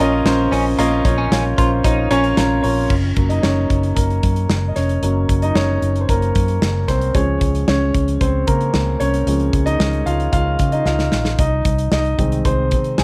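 Piano-driven pop at 113 BPM in straight 4/4, uplifting and warm in mood, cut from a longer piece. A concert grand piano with deep bass sits up front throughout, joined at the start by a clean, compressed electric guitar riff with lush chorus that stays in the background until 2.2 seconds, while a dark, round, foam-muted fingered bass and an acoustic kit with a tight kick, crash, hi-hat and a medium-tuned snare keep time. After a piano fill, the grand takes a solo from 2.9 seconds to the end over chords moving from Gb through Db to Ab, with a drum fill at 10.9 seconds, all set in light small-room reverb.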